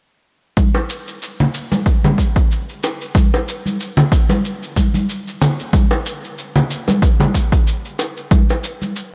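A punchy, layered electronic kick drum, congas and bongos, and a cabasa all begin together at 0.6 seconds in this short cut from a longer organic downtempo piece, setting a meditative, mystical mood at 93 BPM in 4/4 with a gentle swing on the sixteenths. The kick sits up front, produced and electronic in character, and was re-recorded in a small room. The congas and bongos are also forward in the mix, bright and acoustic yet compressed and saturated, played with soft hands. Further back, the cabasa has a gritty, sampler-style texture at its natural pitch, likewise compressed and carrying the same small-room character. Light reverb and a bright 1980s-style digital production frame the groove, with the kick stopping at 8.5 seconds and the cabasa carrying on until 9.1 seconds.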